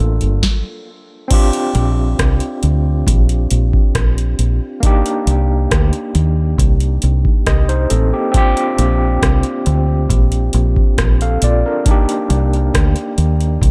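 Bittersweet and full of longing, this short excerpt of lovers rock reggae moves at an unhurried 68 BPM in a straight 4/4. A deep, round fingered electric bass sits up front with a dark, foam-muted tone, anchoring the low end from the opening moment. A booming analog drum machine enters at 0.2 seconds with a deep kick, crisp snare, metallic hi-hats, rim clicks and crash cymbal, its gated reverb and small-room character giving the beat a punchy, close presence. After a brief stop from 0.4 to 1.3 seconds, the groove settles into a gentle sway between Bb69 and Cm7. Sitting lower in the mix, an overdriven tine electric piano plays the accompaniment through a combo amp, its gritty tone shimmering with fast tremolo and trailing tape echo, all set in a digital ambience.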